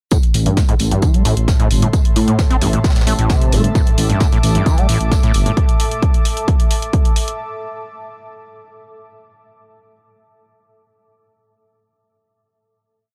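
A heavy, tape-warm four-on-the-floor kick, programmed electronic hi-hats, a brushed acoustic breakbeat loop with edits and a squelchy, distorted acid line with accents and slides open this dark, relentless peak-time techno piece at 132 BPM in A minor, soon joined by a rumbling detuned saw bass at 0.3 s, an airy, breathy pad fading in with slowly shifting chords from 0.9 s and a faint swarming granular drone on A2 from 1.4 s, the acid line carrying a filter sweep, chorus and tape echo while the saw bass, pad and brushed hats pump against the up-front kick in a dry, gritty small room.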